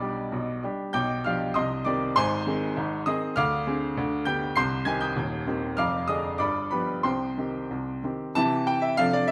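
A bright, brilliant baby grand piano plays alone and up front in this elegant, cheerful classical-period sonatina excerpt in C minor, moving at 98 BPM in 2/4 with a rubato feel, its open tone spanning Eb1 to C7 through harmonies that reach C minor at 7.0 seconds before closing on a C major chord at 8.4 seconds, heard in moderate recital hall reverb within a dark, warm production.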